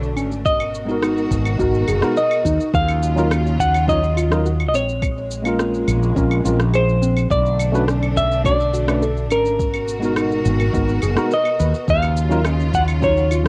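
A clean, hollow-bodied semi-hollow electric guitar carries the melody through cassette tape and tape echo in this relaxed, wistful sunset chillout excerpt in Eb minor at 105 BPM, over a dark, punchy fretless electric bass up front, a worn, slightly out-of-tune tine electric piano with light overdrive entering at 0.9 seconds, soft round pluck arpeggios with chorus in the background, lush bowed symphonic strings holding sustained chords, tape-flavoured electronic shaker, claves and rim click, and a soft overdriven electronic kick, all in a moderate room on a home cassette recording as the chords move through minor ninths from Abm9 to Ebm9.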